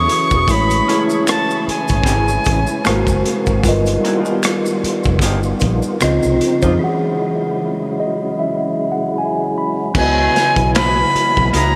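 Soaked in a huge, dreamy reverb, this relaxed neo-soul R&B excerpt sits on a crunchy, gritty breakbeat kit with handclaps and rim clicks, a round foam-muted fingered bass, and a mellow tine electric piano. A fat tonewheel organ holds sustained chords through a slow rotary speaker, while a breathy, reedy jazz flute with tape echo sings up front, then drops out at 3.2 seconds before returning at 10.0 seconds. A slightly broken-up, lo-fi electric guitar murmurs in the background alongside maracas and finger snaps, and a break at 6.8 seconds leaves room for an electric piano fill.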